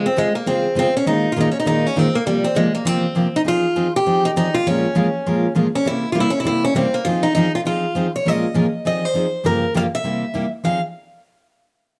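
Fiery and virtuosic, this short jazz excerpt in F minor swings at 200 BPM as two picked steel-string acoustic guitars play up front for 10.8 seconds, a boxy parlour guitar with audible finger squeak carrying the melody over a full-bodied jumbo guitar's accompaniment, through changes from Dbmaj7 to a closing Fm7, all set in a dark production with a wet studio reverb.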